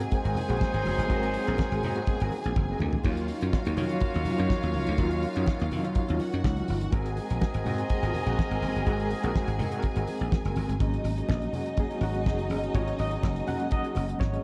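A dark, warm production with light reverb frames this danceable, driving disco passage in straight 4/4, cut from a longer piece. Up front, a damped 70s acoustic drum kit with a fat snare, tight kick and dark cymbals sits beside a punchy, growly thumbed slap bass, with a short drum fill at 2.6 s and very quiet low-tuned congas played with soft hands. Lush bowed symphonic strings carry a second line with vibrato, while a very quiet French horn section holds soft-edged sustained chords and a mellow, distant pop-style horn section punches tight stabs until 10.5 s. In the background, a clean, fingered electric guitar adds accompaniment alongside a gritty, overdriven reed electric piano with a fast tremolo, heard through a combo amp. The harmony moves between Ab9 and Ebm9 before settling on Ab7sus4 at 10.8 s, where the reed electric piano takes a solo to the end.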